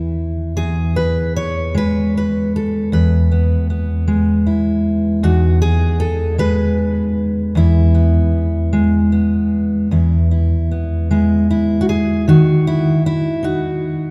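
Rubato 6/8 at about 51 BPM, counted in dotted quarters, lets this short fragment of a longer folk piece breathe at an unhurried, pastoral pace. A single fingerpicked steel-string acoustic guitar plays solo throughout, ranging from E2 up to C#5 in E major. The jumbo-bodied instrument sits up front with a woody, full-bodied tone, and its old strings lend it a warm character. The harmony settles on E, moves briefly to G#m/E around 5.2 seconds, and returns to E. A closing passage begins near 9.9 seconds, and the harmony drifts off the chord at 12.3 seconds. The guitar is bathed in a wet, cathedral-like reverb with a long four-second tail, giving the warm performance the spacious glow of a church or concert hall.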